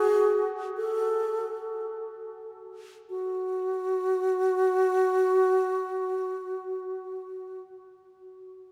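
A vast, echoing cathedral reverb surrounds this yearning, meditative classical fragment, cut from a longer piece, where a solo alto flute sits up front with an airy tone, crisp attacks, lifted highs and expressive vibrato. Moving freely in a rubato three-beat metre within a narrow range from F#4 to A4, the line slows over its opening 3.1 seconds before shifting into a new section. The flute falls silent at 7.6 seconds, leaving the long reverb trail to linger in the space.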